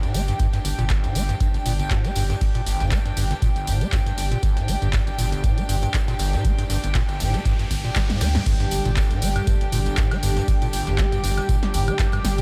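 A squelchy, resonant square-wave acid bass riff with overdrive, tape grit and sidechain pumping drives this gritty, hypnotic acid house excerpt in G minor at 119 BPM, over a deep, dry, up-front kick, a thick saturated sub bass, a punchy analog drum machine with handclaps, woodblock and crash, a very quiet compressed breakbeat kit, a close, jingly tambourine and a floating, bowed string section played sul tasto, while a faint riser builds from 5.7 s into a drum fill and impact at the 8.5 s drop, where a smooth, detuned sawtooth pad with chorus joins.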